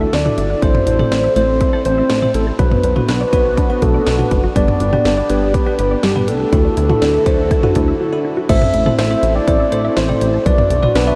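A soft, round octave-layered synth lead carries the melody with chorus and analog delay over a bell-like tine electric piano, a swirling phased analog pad, a very quiet detuned unison pluck playing arpeggios and a glossy chorused synth bass, while a punchy house drum kit up front drives this cool, dreamy synth-pop excerpt, all soaked in a huge ambient reverb, with a brief break at 8.0 seconds.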